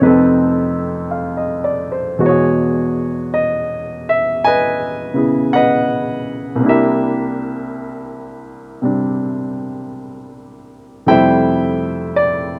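At a slow 54 BPM in 4/4 with swung eighths, this intimate, late-night jazz ballad fragment features a solo baby grand piano, warm, natural and up front, ranging from C2 to G#5 and tuned to A4 = 438 Hz. Across 12.6 seconds it moves through F7#11, Emaj9 at 2.2 seconds, C7 at 6.6 seconds and Fmaj9 at 11.1 seconds. The sound is a dry, close 1970s-style studio recording with little reverb and a faint mains hum underneath.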